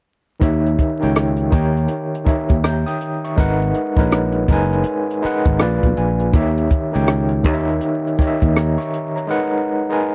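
A dry, close 1970s-style studio sound with small room ambience and vinyl crackle frames this smooth, soulful R&B and neo-soul excerpt at 81 BPM with a swung 16th-note feel. A barky, overdriven tine electric piano with medium tremolo carries the harmony through D#7b9, G#m9 and A#7b9 chords, adding a gritty fill from 5.2 to 6.3 seconds. A growly, bright fingered electric bass and a dark compact cocktail drum kit of hi-hat, tight kick and rim click sit up front beside it, with the bass dropping out at 8.8 seconds and the piano ringing on to 10.1 seconds.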